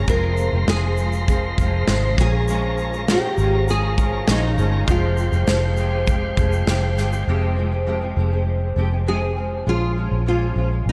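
Reflective and wistful, this acoustic pop fragment sets a full-bodied nylon-string guitar melody, with audible finger squeak, over a boxy fingerpicked steel-string guitar, both shimmering with ensemble chorus. A smooth tonewheel organ with key click and fast rotary speaker holds sustained chords, while a dark, round, foam-muted electric bass sits up front and a studio drum kit adds punchy kick, shaker and snare. The organ drops out at 7.2 seconds and the drums at 7.3 seconds, leaving guitars and bass in a dreamy mix soaked in cathedral reverb.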